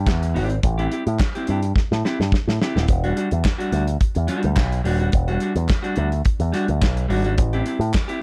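Driving and danceable, this short disco passage in E minor moves at 107 BPM in a straight 4/4. A picked electric bass runs through an envelope filter, its bright, direct amped tone sitting up front from the start and ranging from D#1 to A2. A damped 70s drum kit with a medium-tuned snare, tight kick, hi-hat and handclaps sounds dry and airy yet polished, with a drum fill between 1.8 and 2.9 seconds. A clean, dark electric guitar plays picked accompaniment between G3 and G4, while the harmony moves from Am7 to Em9 at 2.9 seconds and back to Am7 near the close. The whole piece sits in a small room with a dark, warm production, and it is cut from a longer piece.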